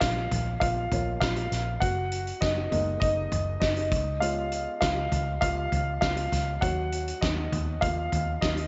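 Bittersweet and earnest, this piano-driven pop excerpt moves at 100 BPM in a straight 4/4, cycling through Bbm, Gb6, Db and Ebm7. A woody, slightly detuned upright piano sits up front and carries a solo across the full 8.7 seconds. Beneath it a dark, round, foam-muted picked electric bass and a loose, roomy indie drum kit with a fat snare and punchy kick fill out the sound, all bathed in moderate spring reverb with a softened top end.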